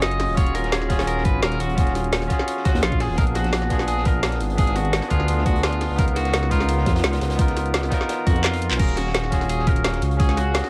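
A dry cut from a longer piece of soulful, rolling liquid drum and bass at 171 BPM in Eb minor, where a deep, rumbling detuned saw bass sits up front under a barky, lightly overdriven tine electric piano with tape echo and a twangy, slightly broken-up electric guitar melody carrying spring reverb and dub echo over chords moving from Ebm11 through Bb7b9 and Db13. The drums layer a compressed, pitched-up electronic kick with an electronic kit of woody snare, metallic hats, handclaps and crash, while a dark, saturated breakbeat kit with a high-tuned snare stays in the background. The kick drops out at 8.4 seconds for a drum fill before the groove returns at 8.8 seconds, and an airy, breathy pad enters very quietly at 9.3 seconds.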